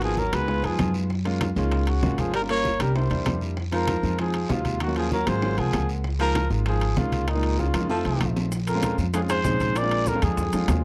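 Lively and sophisticated, this short cut from a longer Afro-Cuban jazz piece moves at a brisk 194 BPM in straight 4/4, centred in Db major. A breathy, mellow trumpet with light vibrato carries the melody up front, its tone touched by a slapback echo, while a baritone saxophone with scooped notes and a smooth top traces a second line further back. A clear baby grand piano supplies accompaniment with long sustain and audible action noise, and a woody, growly pizzicato upright bass sits prominently beneath, anchoring harmonies that run from Db9 and Gbmaj9 through Gm7b5 and C7 toward Bbm7 and Bb7. The percussion bed blends low-tuned congas struck with hard hands, round bongos, and ringing metal-shelled timbales, with a raspy guiro joining at 0.2 seconds and grainy maracas arriving at 8.5 seconds as the second section begins, just after a drum fill. The sound is dry and close, in the manner of a 1970s studio recording, with little reverb.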